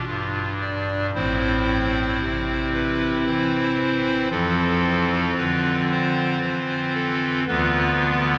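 A cathedral's long, wet reverberation surrounds this short cut from a longer classical piece, heard from well back in the room. A lone pipe organ speaks up front on a hollow clarinet reed stop with baroque voicing, a touch of chiff and a tremulant, moving through Dm, Am, F and Bdim/D in a slow, rubato triple metre. The mood is grave and solemn, like a chorale, spanning from deep bass notes to the middle of the treble.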